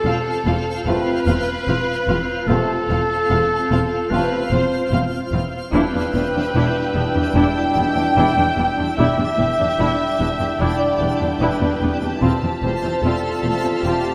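A cinematic suspense film score excerpt at 74 BPM in 4/4, ominous and uneasy, built on a slow drift from F/E to Em7 and back to F/E at 12.2 seconds. Muted symphonic strings played con sordino carry most of the weight: a veiled, close violin melody sits high, a second violin line shares the middle register with the warm clarinet, and violas fill the accompaniment while cellos and double basses hold a dark, lush bass on E. A twinkling granular texture with an octave-up shimmer and its own built-in reverb sustains chords throughout, joined by mellow, distant French horns and a very quiet, clear trombone section from 0.9 seconds. A delicate, bell-like celesta enters at 4.1 seconds, and a faint, distant studio violin section adds a high texture from 5.7 seconds. The whole ensemble sits in a wet scoring stage reverb, giving the soft-attacked, shadowy sound a spacious, lingering tail.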